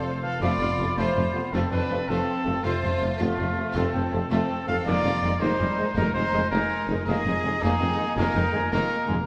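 In a straight 12/8 at 108 BPM, this triumphant, heroic cinematic excerpt sets an up-front, punchy trumpet's stabs over a lush violin section carrying the melody, with a second violin line, a present clarinet, a background oboe, an airy flute ensemble entering at 0.2 s and smooth violas accompanying beneath; mellow French horns and tight trombones hold sustained chords, a ringing thumb-plucked harp arpeggiates, and focused cellos, double basses and a tuba arriving at 0.4 s anchor a low F, all in a wet scoring-stage reverb as the harmony moves from F to Absus2/F at 4.9 s.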